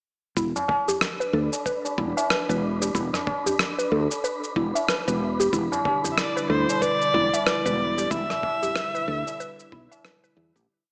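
A rich, bowed kamancheh enters at 6.1 seconds with a smooth, close melody full of vibrato and portamento, floating over an earthy, hypnotic organic downtempo groove in E minor at 93 BPM with a swung 16th feel. A woody, mallet-like synth pluck cycles a 16-step arpeggio under a filter sweep, with chorus, phaser and tape echo, while a growly, round fretless bass plays a syncopated riff that pumps with the sidechain. Gritty, overdriven kick, shaker and rim click mix with ringing, low-tuned tabla, a wind-like tuned noise texture lingers in the background, and an airy, breathy pad arrives at 5.5 seconds, all in a lush hall with a small-speaker tone before a fade-out beginning at 7.2 seconds.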